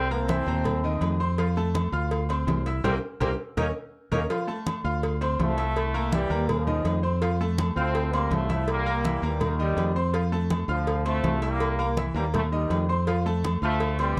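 A dark, warm production with light reverb frames this joyful, danceable salsa excerpt, where a punchy, vintage trombone section with light vibrato carries the melody up front over a brilliant grand piano with audible action noise and a round fingered electric bass, while hard-handed congas, a low-tuned cowbell and distant, ringing agogo bells and timbales drive the groove through a band accent from 2.8 seconds and a drum fill near 3.8 seconds.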